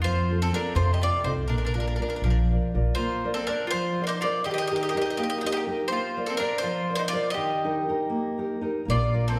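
Romantic and lively, this short excerpt of an Italian folk serenade sways in a rubato 6/8, with a bright, picked bowl-back mandolin singing the melody up front while a second, rounder mandolin plays a lower line beneath it. A full-bodied, fingerpicked nylon-string guitar carries the accompaniment, and a woody pizzicato upright bass plays until 2.9 seconds, then returns at 8.9 seconds. The ensemble is heard from further back in a recital hall with a lush reverb.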